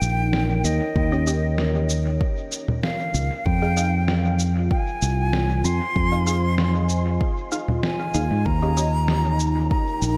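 A hazy, spacious ambient dub excerpt in Eb mixolydian at 96 BPM, where an airy silver concert flute with vibrato carries the melody through dub echo over a deep, detuned pad with chorus, a round, punchy fingered electric bass up front, muffled tape-warm shaker, snare and congas, an overdriven electronic kick entering at 1.0 seconds, and a muted, phaser-treated dub chord stab in the background, all moving from Eb7 to Fm7 and back.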